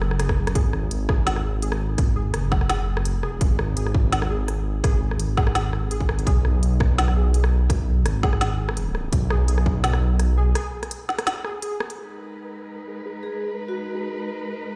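Played back through a big sound system in a bare room with large studio reverb, this dark, tense half-time drum and bass fragment in G# minor at 168 BPM opens on a drum fill, with a hard-clipped electronic kick, a woody snare, crisp hats and rim clicks. A deep, rumbling detuned saw bass sits up front, while a warbly, lo-fi dusty pluck with chorus and delay plays arpeggios until 14.2 seconds. After a break from 10.6 seconds, the pluck takes a filter sweep as a lush, bowed cello section with vibrato and portamento pumps in sustained chords from 12.0 seconds, and a metallic, ringing vibraphone adds a brief melody at 13.2 seconds.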